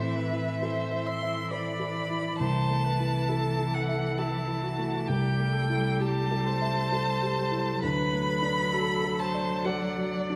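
A violin sings a yearning, smooth melody over a dark, mellow baby grand piano with long sustain, a focused viola accompaniment and a close, even cello second line in this melancholic slow romantic movement for piano quartet, played with rubato at 66 BPM in 3/4 and moving from Am through Am/C and Am7/C to D, with all four parts, bowed strings and piano alike, heard in moderate concert-hall reverb that gives the vibrato-laden violin a rich, distant glow in this fragment cut from a longer piece.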